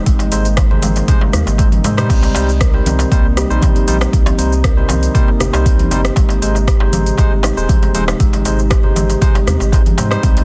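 A dense, heavily limited modern mix with little reverb opens this hypnotic, driving afro house excerpt at 118 BPM in a straight 4/4, cut from a longer piece. An overdriven electronic kick sits deep and up front, joined by an afro-pop kit with metallic hats, crash, rim click, shaker and toms that plays a short fill from 1.6 to 2.1 seconds. Congas with a thick, medium-tuned skin and a crisp, close darbuka fill in the background percussion. A round sine sub bass with tube saturation anchors the low end, while a woody, hollow kalimba plays ringing arpeggios through delay and a barky, bright tine electric piano adds stabs, both pumping against the kick. Underneath, a detuned, warbling analog pad with chorus holds sustained chords that move from Ab to Cm at 2.1 seconds and back to Ab at 6.2 seconds.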